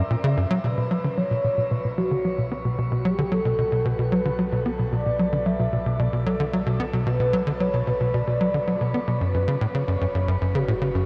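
Ambient, sequencer-driven space music at 112 BPM in a straight 4/4, cosmic and expansive, with a tight, punchy sawtooth sequencer bass riff driving up front through subtle chorus and tape echo, a mellow horn-like lead carrying the melody with soft attack, vibrato, lush chorus and tape echo, and a round, nasal analog bass fading in from 0.6 seconds deep in the background, all set in a dark production bathed in a long shimmering reverb and cut from a longer piece.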